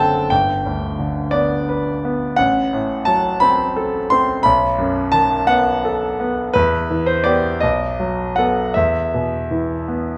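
A romantic classical character piece for solo piano, stormy and passionate, unfolding in 6/8 with free, rubato timing. The bright concert grand sits up front with a brilliant, natural tone, deep bass and short sustain, spanning from low F#1 up to C6 inside a moderate recital-hall reverb. Its harmony pushes from G through diminished and dominant-seventh tension to E minor before closing on a bare open chord at 8.7 seconds, as this brief fragment of a longer piece breaks off.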